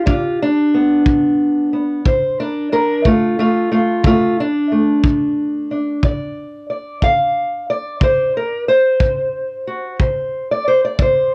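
A fingerpicked steel-string acoustic guitar carries the melody up front with a dark, boxy parlour tone, ranging from G2 to F5 over a slow 12/8 country blues at 60 BPM that moves from G to D7 before the chords drop away at 10.0 seconds. A tight, rolled-off kick drum played with brushes sits up front alongside it in a small room, giving the laid-back, swaggering groove its pulse. The whole excerpt is dry and heard through worn, warbling cassette tape with a wavering pitch drift, tuned slightly below standard at A4 = 439 Hz.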